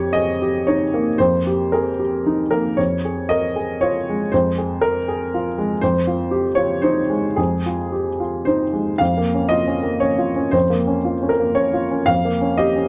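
Close, detailed microphones and light reverb place a solo upright piano up front, its woody, intimate tone carrying audible action noise. This melancholic, wistful neoclassical minimalist piece moves in a rubato 3/4 at around 108-122 BPM, ranging from F2 to F5 over Eb7/F, Db/F and Fm7 before turning to a new section on Bbm/F at 9.0 s. Cut from a longer piece, the 12.9-second fragment is tuned to A4 = 439 Hz.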